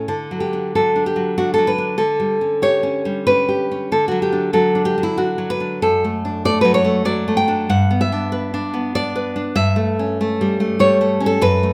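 A solo nylon-string guitar opens at once, fingerpicked and up front, its fresh strings giving a warm tone to this tender, sunny romantic piece in D major. Moving in a rubato 3/4 at about 95 BPM, it ranges from F#2 to G5 and drifts through D, A7/D, D/F# and G before settling on A7/G near 9.5 seconds, with a touch of light reverb around it. The excerpt is cut from a longer piece and runs to 11.7 seconds.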